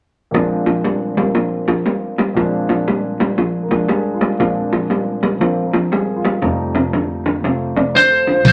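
Swaggering and rollicking, this electric blues shuffle in Bb at 118 BPM, cut from a longer piece, opens with a deep-bassed concert grand piano accompanying a lo-fi, slightly broken-up guitar riff from a small old amp over Bb7 before moving to F7 at 6.4 seconds; a bright, twangy lead guitar enters up front at 8.0 seconds, followed by a dark, round, foam-muted bass and a natural country drum kit with a punchy kick and a crash cymbal that come in at 8.4 seconds, inside a moderate club reverb.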